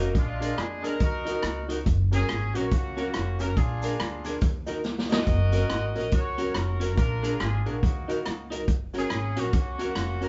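Heard through the dull, band-limited sound of cassette tape, with a live band in one modest studio room, this cheerful, upbeat ska cut swings at 141 BPM in F# major, cycling through A#7, D#m and F#. A distant, roomy horn section carries the melody with light vibrato over a bright, twangy clean electric guitar, dark upright piano stabs set back with audible action noise and a slightly detuned edge, and a woody pizzicato upright bass. Up front, the swinging big-band drum kit drives with a punchy kick, rim clicks and hi-hat, adding a short fill at 4.8 seconds, while a grainy cabasa ticks very quietly underneath.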